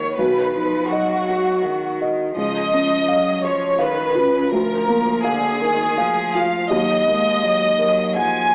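A rich, up-front chamber violin section carries a vibrato-laden melody over a soft, felt-muted upright piano and a clear, distant solo cello in this reflective, fragile neoclassical excerpt in Eb minor, moving rubato in 3/4 at around 82 BPM through B, Db, Bb/D and Ebm, all set in a moderate recital hall reverb and colored by worn, warbling cassette tape with pitch drift and a small-speaker sound.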